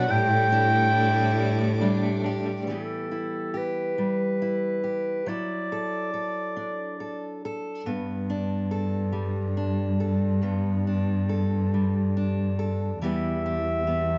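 An acoustic folk-pop ballad in G major at 70 BPM in a straight 3/4, nostalgic and heartfelt, cut from a longer piece. A fingerpicked steel-string acoustic guitar with woody, old-stringed tone carries the accompaniment up front for the full 14.2 seconds, while a classical-style solo clarinet, distant and roomy, sings the melody until 7.4 seconds and returns briefly at 13.1 seconds. For the opening moments a bright, intense violin adds a second line, a lush studio string section holds sustained chords in the background, and an electric guitar through a small old amp, slightly broken-up and lo-fi with tremolo, picks arpeggios behind them, all falling away by about 2.8 seconds. A bowed cello, expressive with vibrato, portamento and a soft attack, plays the bass up front at the start and re-enters at 7.9 seconds on a Gadd9 chord to underpin the rest. The harmony moves from Dsus4/A through Em and Dadd9/F# before settling back on Em, all framed by a moderate studio reverb and a gently rounded top end.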